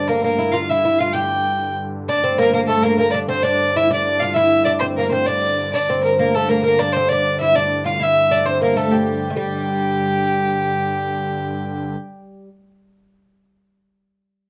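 From the first moment, a single bowed fiddle, earthy and up front yet distant, carries a driving, mysterious medieval melody in 6/8 over a woody, plectrum-plucked fretless oud with doubled strings playing a lower second line and a soft, shimmering pipe-organ drone on celeste string stops; the fiddle falls away at 11.9 seconds and the organ at 12.0, leaving the oud alone until 12.5 seconds in this rough home-demo fragment of a longer piece, heard in a small room.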